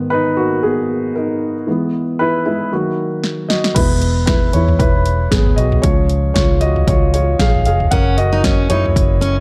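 A dark, woody upright piano opens this bittersweet, dramatic piano-driven pop passage, playing alone with a mellow, natural tone that sits up front over a minor-leaning progression. At 3.2 seconds a punchy analog drum machine arrives with a short fill, its dry, overdriven kick and snare joined by hi-hat, toms and crash cymbal. At 3.8 seconds a vintage foam-muted fingered electric bass enters, round and amped, settling into the low register under the piano's continuing lead. A picked steel-string jumbo acoustic guitar adds a full-bodied riff at 7.9 seconds, with audible finger squeak, mixed a little lower than the other parts. A gentle 16th-note swing gives the groove a slight lilt, and the shadowy production with light reverb keeps the cut-off excerpt warm yet dramatic.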